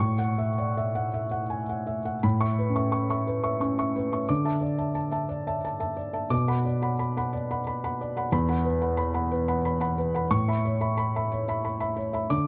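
Close, detailed microphones and a light reverb frame a felt-muted upright piano that sits up front, its audible action noise lending the recording an intimate character. This short cut from a longer neoclassical minimalist piece feels peaceful and hopeful, set in A major and 3/4 at about 89 BPM with a rubato feel. The solo piano plays for the full 12.5 seconds, its soft, mellow tone spanning a range from E2 to D6. A brief opening on an A6 chord gives way at 2.2 seconds to a longer passage that moves through Aadd9, Dsus2, Bm and Esus2 before returning to Aadd9 at 10.3 seconds. The suspended and added-note chords suit the muted voice of the instrument and the peaceful, hopeful mood.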